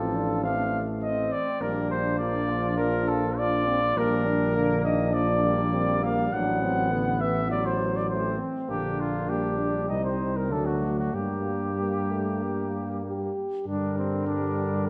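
A mellow trumpet carries the melody up front, its light vibrato sounding distant and roomy in this short classical brass quintet passage cut from a longer piece. The playing is rubato in 4/4, and the mood is triumphant and warm, with the harmony turning toward a minor colour at 4.0 s and moving through a diminished chord, Cm7 and D before coming to rest on Gm. Behind the lead, a dark trumpet with a soft attack plays a second line in the background, while a bright trombone and a French horn with vibrato and a smooth top supply the accompaniment. The tuba holds the bass up front with light vibrato, reaching down to A1. A wet scoring-stage reverb of 1.6 s surrounds the ensemble, and the production leans dark overall.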